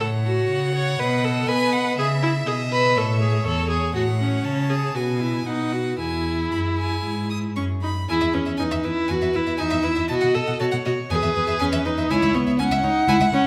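The quartet sounds in a reverberant recital hall that gives the bowed strings a long, wet halo, with the rich viola and cello placed up front. This short section of a quick classical-period movement in E major is cheerful and spirited, moving at 112 to 123 BPM in 4/4 with a rubato feel. The first violin carries the melody in a clear, focused, close tone with vibrato, reaching up to D#6. The second violin plays an inner line, warm and expressive, shaded with vibrato and portamento and smooth at the top. Beneath them the viola's even accompaniment and the cello's smooth bass line are both played with vibrato. The harmony moves through F#m/A, B and C#m before settling on E at 6.0 seconds, and a new passage begins at 8.1 seconds, passing through B7 back to E and onto C#m as all four players run to the cut at 13.5 seconds.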